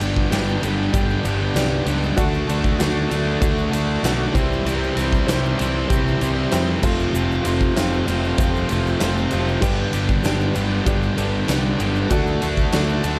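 Swaggering and driving, this classic rock piece in G mixolydian rolls at 97 BPM over a G, D, C and Fadd9 progression, with a huge arena drum kit's boomy kick and fat snare, a fuzz-laden picked electric bass, and a crunchy overdriven guitar riff backed by a cranked stack guitar, while a woody upright piano, a very quiet picked steel-string acoustic guitar, a piping tonewheel organ on slow rotary, and a grainy egg shaker fill out the arrangement under light reverb.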